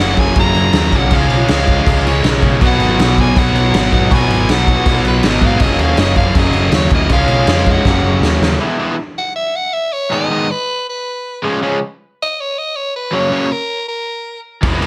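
A straight 4/4 pulse at 160 BPM drives this rowdy, energetic punk rock passage in F# major: an up-front garage drum kit with a punchy kick and a stone-room ring pushes beneath a raspy, growling soprano saxophone melody with vibrato and tape echo, backed by a crunchy guitar riff and a raw garage guitar riff, both overdriven and set in the background, a very quiet double-tracked fuzz guitar and a growly, overdriven picked bass, until a drum fill leads at 8.6 seconds into a half-time stretch where the saxophone and the two overdriven guitars carry on alone before the fuzz guitar, bass and drums return at 14.6 seconds.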